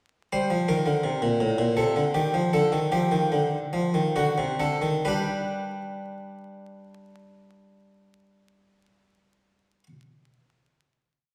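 In a straight 3/4 metre between 65 and 84 BPM, this short baroque-style two-part invention for solo harpsichord slows down from 0.3 to 6.4 seconds, giving the whole piece a contemplative, solemn bearing. The harpsichord has a round, plucked Italian-style tone on a single set of strings, spanning A2 to C5 as its two voices weave in imitative counterpoint. The brief exposition moves from a rootless G minor through A diminished over C, an open G fifth over D and a D7. It then settles at 5.0 seconds on a final G chord that rings until the instrument stops at 9.9 seconds. The harpsichord sits up front, while the recording places the listener further back in a recital hall whose wet reverb, with a 1.7-second decay, lingers around each note. A vinyl crackle lends the whole a worn, antique patina.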